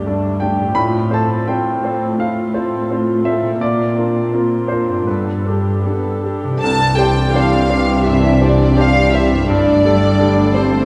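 A clear, polished baby grand piano sits up front in this hopeful, uplifting cinematic film-score passage, a brief cut from a longer orchestral piece in C major at a rubato 84 BPM in 4/4. From the start, a very quiet concert harp rings out bright fingerpicked arpeggios while dark, intimate viola and cello sections play sul tasto with light vibrato, the violas in the background and the cellos holding the bass. At 6.6 seconds the ensemble grows: a violin section carries a single-note melody in the background, and a richer violin section sings a higher second line up front. A French horn section adds distant, roomy sustained chords, and a double bass section lays a pure, floating foundation beneath. The harmony drifts through suspended and added-ninth chords, from Gsus2 through F/A, Bbadd9 and Gadd9 to a Cadd9 before settling back on Gsus2, all bathed in a long church reverb until the passage ends at 10.8 seconds.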